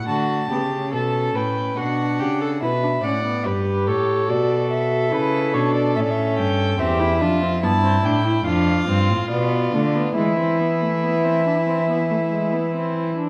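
Stately and joyful, this brief cut from a longer baroque-style fugue for string quartet moves at 71 BPM in a straight 4/4, with two distant, nasal gut-string violins carrying the melody and a second line over a reedy, smooth-topped viola accompaniment and an up-front, rich cello bass, all bowed in period style within a dark production bathed in recital-hall reverb as the harmony travels from D through B minor and diminished colours to close on E around 10.2 seconds.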